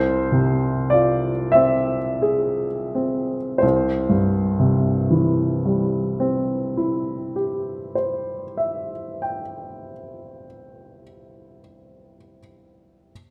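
Classical romantic nocturne for solo piano, dreamy and serene, drifting in a rubato 12/8 that slows over the opening 3.6 seconds as an Fm/C harmony settles onto C. The warm baby grand sits up front, ranging from C2 to G5, while a wet recital hall reverb with a 1.7 s decay lends a soft, spacious halo. The passage is cut from a longer piece and ends at 13.1 seconds.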